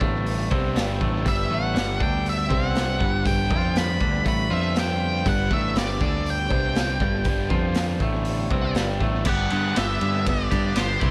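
Jangly and carefree, this indie rock excerpt moves at 120 BPM in a straight 4/4 feel in G major, resting on a G chord, with an echo-heavy mix that soaks the guitars and drums in dub echo. A bright, clean twangy guitar with spring reverb and a background overdriven guitar with subtle chorus play riffs over a round, dark overdriven picked bass and an up-front raw garage drum kit whose gritty, saturated sound has dark cymbals, a punchy kick and a pumping small-room character. At 1.3 seconds a fuzzy, dark octave-fuzz lead guitar enters with a distorted melody high above the band, and a new section arrives at 9.3 seconds.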